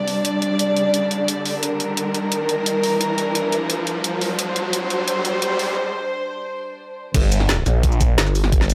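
Dark technical drum and bass at 174 BPM in G minor, aggressive in mood, where a close, sul tasto chamber string section holds sustained Gm chords with sidechain pumping beside an electronic riser and an overdriven kit of woody snare, bright hats, shaker and crash, building to a brief break at 5.8 seconds before the drop at 7.1 seconds brings in a knocking overdriven kick and a swirling, thick detuned saw bass with phaser and tube saturation, all in a short excerpt cut from a longer piece.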